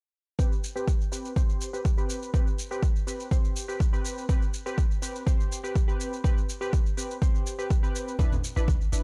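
This hypnotic, spiritual afro house piece at 123 BPM opens with an overdriven, deep electronic kick up front and an overdriven shaker under round, detuned analog key stabs that carry chorus, tape echo, sidechain pumping and an evolving filter sweep over a Gadd11/C chord. Saturated acoustic congas slip in at 8.2 s in the background as the harmony moves to a rootless Cmaj7. At 8.6 s, a boomy, mellow 808-style sine bass pumps in up front, all within a dry, digital ambience.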